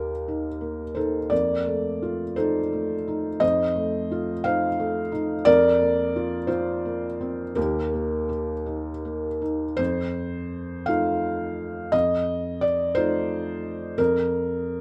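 A felt-muted upright piano plays alone and sits up front, its soft, intimate tone carrying audible action noise and a vintage character in this peaceful, tender neoclassical minimalist piece. In a rubato 6/8 lilt, the harmony moves from Eb through F7 and Bbsus2/F back to Eb, then shifts into a new passage at 9.8 seconds before resting on Bb5/F near 14.0 seconds. Light reverb surrounds the mellow piano in this short passage cut from a longer piece.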